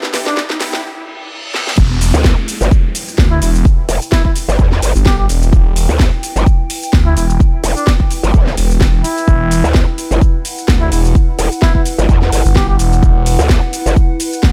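A dry, gritty and bouncy bass house excerpt opens with a brief build-up: a nasal, band-passed chord stab under a filter sweep, a drum fill, a riser and reverse cymbal, and a warbling, lo-fi tape-like pad sitting dark in the background. The drop lands at 1.8 seconds with a punchy, up-front electronic kick and a thick, swirling phased saw bass, joined shortly after by a growling, wobbling bass, both basses with sidechain pumping, while the house kit adds a cracking snare, metallic hats, shaker and crash. A veiled, distant trumpet with a bucket mute makes a brief appearance at 0.3 seconds, then plays a classical-style solo melody with tape echo from 3.3 to 12.8 seconds.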